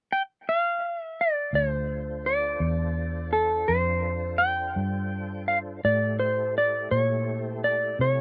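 Mournful and brooding, this slow blues in 12/8 moves at 56 BPM in D minor, tuned slightly below standard pitch, and is cut from a longer piece. A clean lap steel guitar carries the melody from the first moment, its bright, twangy slide tone sitting up front and alone over an open, unaccompanied opening. At 1.5 seconds a tonewheel organ and a vintage muted electric bass enter together as the harmony settles on Dm7, moving to A7 at 5.8 seconds. The organ holds sustained chords far back in the mix, lightly overdriven with key click, chorus vibrato and a slow rotary speaker. The fingered bass is dark, round and punchy, its foam-muted, amped tone placed up front beneath the steel. The sound is dry, recorded outdoors with little reverb or room ambience.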